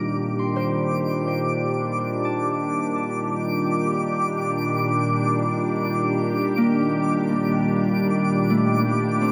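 Serene and warm, this free-time ambient fragment in Eb lydian rests on a single Ebmaj7 chord, with an up-front evolving wavetable pad of morphing, detuned, full-bodied sustained chords glazed in chorus, a ringing fingerpicked Celtic harp drifting in the background with arpeggios trailed by delay, a sparkling granular texture twinkling high with octave-up shimmer, and a very quiet organ-like drone slipping in at 9.0 s, the pad, texture and drone each carrying their own reverb inside a vast cathedral space.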